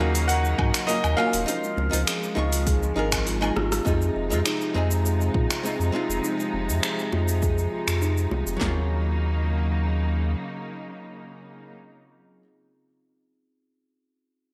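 Awash in lush hall reverb and bright 1980s-style digital sheen, this smooth, wistful sunset chillout excerpt at 101 BPM in Eb dorian opens with a brilliant baby grand piano melody through digital delay that stops at 3.2 seconds, over a dark, clean hollow-body archtop guitar with delay, distant, biting strings holding sustained chords, a woody kalimba arpeggio behind a low-pass filter that sweeps from 3.9 to 8.6 seconds, a round sine sub bass up front, overdriven deep house drums with a deep kick, punchy snare, claps, snaps, metallic hats, shaker, woodblock, rim clicks and a drum fill, and very quiet low-tuned bongos.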